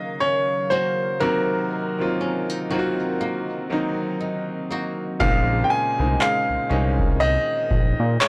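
A longing, late-night mood hangs over this short contemporary R&B excerpt, moving at a slow 60 BPM in 4/4 with a swung sixteenth-note feel. A clear grand piano carries the melody up front while a bright, brilliant concert grand with deep bass plays the accompaniment beneath it, and a hollow, flute-like pad with chorus sits airy and soft in the background. A dark, fingerpicked flamenco guitar adds arpeggios through a tape echo, its finger squeaks audible. At 5.2 seconds a fat, nasal, saturated analog bass with a filter pluck arrives alongside a booming analog drum machine of deep kick and handclaps, both placed up front. The harmony moves from Ebm7 through Cm7b5 to Bbm11, captured in a dry, gritty hardware recording with little reverb.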